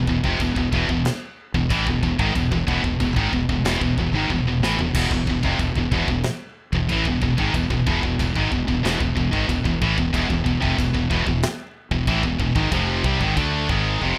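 Heavy metal at 93 BPM in a straight 4/4, this dark, epic fragment cut from a longer piece sets a bright, up-front high-gain guitar riff on E over a scooped second distorted guitar in the background, a growly fuzz-overdriven fingered bass, and a polished, airy acoustic kit with punchy kick, medium-tuned snare, toms, crash and china that enters at 0.1 seconds and drops in fills at 4.3 and 14.0 seconds, all in a dry, rough home demo mix.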